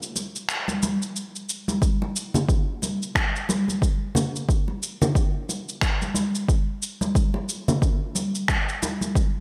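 Warm and mystical, this downtempo percussion excerpt moves at 90 BPM in 4/4 with a 58% swing on the sixteenths. Gritty, compressed electronic cabasa and finger snaps open at 0.0 s, acoustic congas played with soft hands join at 0.2 s, and a layered, punchy electronic kick drum arrives at 1.8 s after the opening break, each sitting up front. A lush hall reverb and digital ambience frame the bright 1980s-style digital production.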